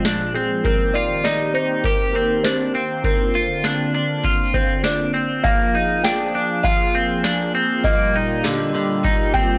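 Bright, clean electric guitar arpeggios, picked and compressed and bathed in lush chorus and analog delay, run through this ethereal, floating dream pop fragment, joined by a soft, felt-muted upright piano melody with its own delay, a swirling, detuned sawtooth pad with phaser and chorus holding sustained chords, and a booming analog drum machine with deep kick, crisp snare, metallic hats, ride and tambourine, all in a dry, gritty recording touched by light digital reverb.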